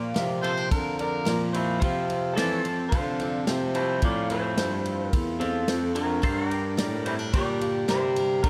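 Nostalgic and easygoing, this short honky-tonk and classic country passage has a twangy, slightly broken-up electric guitar carrying the melody up front, over a bright, full-bodied picked dreadnought acoustic guitar and a clear, woody upright piano sitting in the background. A mellow baritone saxophone with light vibrato and a soft attack holds down the bass, while a clean, compressed pedal steel guitar adds sustained chords with fingerpicked slide and volume swells. A natural studio-room drum kit, with a punchy kick, medium-tuned snare and bright ride cymbal, sits up front, and an overdriven, gritty harmonica darts in for a brief second line from 0.4 to 1.4 seconds with scooped notes and tongue slaps, all under a light reverb.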